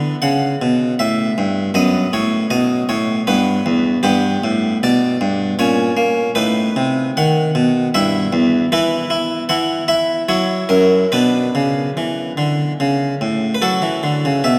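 Classical baroque-style suite movement in a radiant, dance-like triple metre with a rubato feel, featuring a solo harpsichord, airy and round with a single set of plucked strings, placed up front yet bathed in a cathedral's long, wet reverb across this short excerpt cut from a longer piece.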